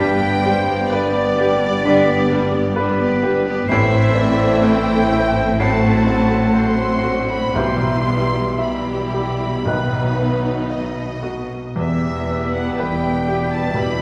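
Set back in a reverberant scoring-stage space, this brooding, tragic 14-second classical passage in E minor moves with rubato at about 56-66 BPM. A clear baby grand piano carries the melody with a lush violin section, while a second violin line, an airy hollow flute, a vintage clarinet and a warm oboe weave supporting lines. A distant bassoon and an expressive viola section with portamento fill in the accompaniment, and a smooth cello section with a focused double bass section anchors the bass. A mellow French horn section and a very quiet bright trombone section sustain chords, and round soft-mallet timpani sound from 7.6 to 11.2 s as the harmony moves from G through Am and B before settling on Em.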